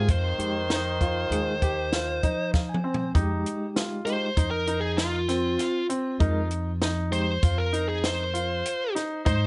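In a straight 5/4 at 98 BPM, a compact cocktail drum kit sets the uneven pulse up front, its high-tuned snare, tight kick, hi-hat and toms sounding dry and natural. This brooding, intricate progressive band piece in F minor opens on an Fm7 chord. A woody upright bass plays pizzicato underneath while a clear, polished baby grand piano plays arpeggios. A bright, barky tine electric piano, lightly overdriven with fast tremolo through a combo amp, adds accompaniment. A nasal, straight-muted trombone holds a classical-style second line in the background until 2.5 seconds, and the electric piano and drums each play a fill before the bluesy, distorted lead guitar, which has carried the melody from the start, takes a picked solo with digital delay from 3.1 seconds. The sound carries light reverb and a soft-topped high end, and the clip is cut from a longer piece.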